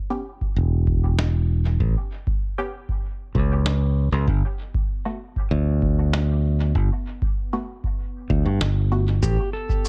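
A bright, growly fingered electric bass sits up front in this hazy, spacious ambient dub fragment, moving at a straight 97 BPM in 4/4 in A mixolydian. Beneath it, a dry, deep analog kick drum pushes forward, while a muffled, pitched-down snare with cabasa carries a tape-warm, compressed character and trails off into dub echo. Muted, filter-plucked chord stabs built from detuned sawtooth and square waves add short, percussive colour, shaded by a phaser, a subtle chorus and their own echo. A very quiet, moody pad of slow-attack, detuned synth tones with a sub octave holds sustained chords in the background as the harmony shifts from A to G at 4.3 seconds. At 9.2 seconds, just as the chord turns to A7, a clean, dark lap steel guitar arrives with slide and volume swells, its brief phrase repeating into dub echo. The production is dark and warm, with little reverb.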